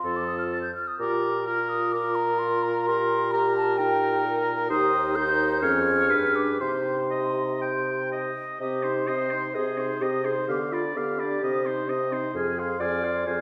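A hollow, airy silver flute carries the melody with vibrato high above a wind quintet in this graceful, spirited classical-period movement, taken quickly at 128 BPM in 4/4 with a rubato feel. A distant oboe adds a second line while a clear clarinet and a background French horn with vibrato fill out the accompaniment, and an up-front bassoon with a smooth top holds the bass. The harmony opens in Bb major and turns to C minor at 4.7 s, and the whole passage, cut from a longer piece, sits in the wet reverb of a concert hall.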